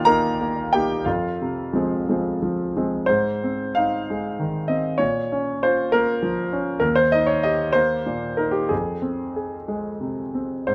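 In a 6/8 with a rubato feel, around 58-67 beats per minute in dotted quarters, this tender, hopeful neoclassical minimalist fragment is cut from a longer piece and played by a solo concert grand piano in A-flat major. The piano sits up front with a clear tone, deep bass and short sustain, ranging from Eb2 to Bb5 as it moves from Eb to Fm and then opens a new passage at 3.1 seconds, drifting through Ab, Bbm, Eb and Fm. A small room ambience surrounds it, giving the whole a rough home-demo character.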